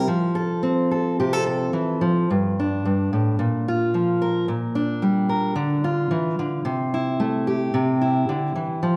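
A fingerpicked steel-string acoustic guitar opens this short folk excerpt on an F chord, playing alone and up front from 0.0 to 9.0 seconds. The mood is haunting and melancholic, carried by a straight, steady feel in four. The guitar's warm tone rings through a lush recital-hall reverb, giving the close playing an auditorium glow that lingers between notes. Its range stretches from a low G2 up to Bb4 as the harmony moves through G5, Bb, Gm/Bb, Dm and Am7/C before landing on C at 7.7 seconds. Cut from a longer performance, this moment feels like a quiet, searching passage caught mid-thought.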